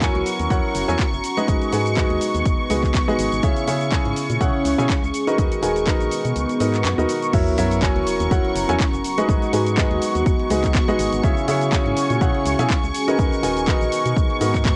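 Captured on a home cassette recording with moderate studio reverb, this soulful, bittersweet piano house excerpt pulses with sidechain pumping across a clear, up-front baby grand riff and a hollow, percussive FM bass with an organ-like tone, all driven by a punchy, overdriven electronic kick. A silky, detuned string pad with ensemble chorus and phaser holds sustained chords up high, while a deep, moody ambient pad warbles beneath with its own chorus and reverb, and an overdriven house kit adds bright hats, handclaps, shaker and crash. The kick drops out at 6.4 seconds, then the drop lands at 7.3 seconds with a background sub drop running until 9.3 seconds.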